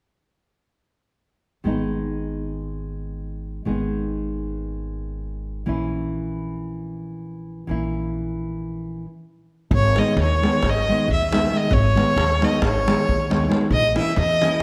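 Heard in a moderate recital-hall reverb, this fiery, virtuosic Balkan wedding-band excerpt in 9/8 opens with dark, fingerpicked classical nylon-string guitar up front and woody, thumpy pizzicato upright bass, pauses briefly at 9.0 seconds, and then at 9.7 seconds a rich, smooth bowed violin with vibrato and tape echo takes the melody up front while a deep, distant davul joins.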